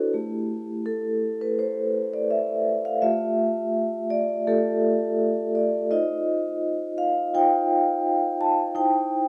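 A high A5 rings out at 0.1 s to open this short, flowing passage cut from a longer contemporary classical piece for solo vibraphone, where the up-front, dark yet metallic tone of medium mallets and a slow motor vibrato carry shifting harmonies from Gsus2/A to Eb69 and C/Eb, all settled in a moderate recital hall reverb.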